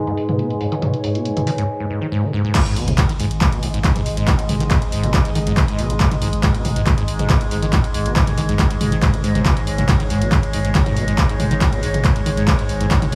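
A punchy, tape-warm electronic kick lands at 2.5 s to drive this intense, industrial G# minor peak-time techno excerpt at 139 BPM, joined by a very quiet sub drop and a thick, saturated sine sub bass, while from the opening a squelchy, resonant sawtooth acid bass riff sweeps its filter through the first 2.5 seconds over an analog drum machine of handclaps, hi-hat, ride, crash and toms re-recorded in a small room, a slowly blooming drone of moving overtones, and a soft, breathy, detuned pad murmuring in the background, with sidechain pumping breathing through the drone, pad and both basses.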